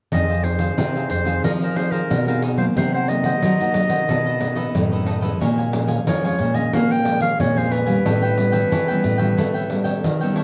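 A smooth-topped clarinet carries the melody up front in a classical solo style, leading this bittersweet, nostalgic samba-choro piece in F minor at a straight 91 BPM, cut from a longer work. Beneath it, a fingerpicked nylon-string guitar with fresh strings plays close-up accompaniment, while a second nylon-string guitar holds the bass further back, its finger squeaks audible. A crisp, bright picked cavaquinho and a jingly pandeiro played with soft hands, sounding distant in a large room, complete the dark, warm studio mix as the chords move from Fm7 through Cm7b5, B9 and Bbm7 to A9.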